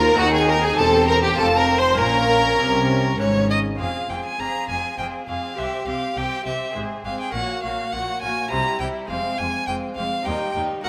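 A straight 3/4 pulse at 102 BPM drives this stormy baroque-style concerto movement, a 10.9-second passage cut from a longer piece that starts in Bb minor and turns to F minor at 3.8 s. Up front, a solo violin carries the melody with a rich, focused, vibrato-laden tone. Behind it, a chamber violin section also plays the melody, higher up, in a smooth-topped blend, while a second violin section plays an even second line beneath. A viola section fills the middle, a warm cello section adds soft-attack bowing with expressive portamento, and a double bass section anchors the low end. A delicate, bright lute with doubled gut strings, some octave-doubled, is fingerpicked as accompaniment, and a recital-hall reverb with a 1.6-second decay gives the ensemble a resonant, wet space.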